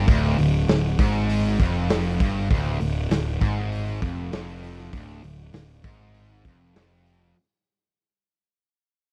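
Blues rock power trio with a southern rock streak, this raunchy, driving snippet from a longer piece sets a bright, double-tracked, compressed distorted guitar riff alongside a round, overdriven fuzz bass and a gritty, saturated garage drum kit with punchy kick, medium-tuned snare and hi-hat, all three up front in a dry, close 1970s-style studio sound that fades out across its 7.4 seconds over a Ddim chord.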